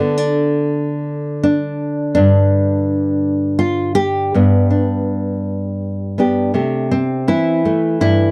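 Folk fingerstyle piece in three, gentle and peaceful, carried by a single nylon-string guitar that is fingerpicked in a classical manner, bright and up front, spanning G2 to A4. The harmony passes from D5 to G at 2.2 seconds, then a new section opens on C6 at 6.5 seconds. The sound is dry and close, in the manner of a 1970s studio, with light reverb, and the clip is cut from a longer piece.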